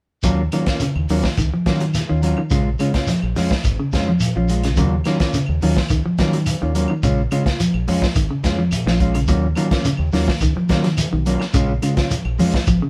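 A straight 4/4 groove at 106 BPM drives this defiant afrobeat excerpt in Eb minor, cycling between Ebm9 and Bbm7 throughout. Up front, a crunchy breakbeat drum kit with a tight kick, medium-tuned snare and hi-hat sounds saturated and gritty with a rolled-off top. Beneath it, a deep dub fingered electric bass sits dark and round, while a grainy, band-limited shekere and woody, compressed claves in the background, entering at 0.5 s, fill in the percussion. A clean semi-hollow electric guitar plays hollow-body arpeggios low in its range, and a second, mellow electric guitar sits forward with dark, clean stabs higher up. Very quiet, damped, low-tuned congas with a thick skin join at 9.7 s, and the whole band plays live together in one room with moderate studio reverb.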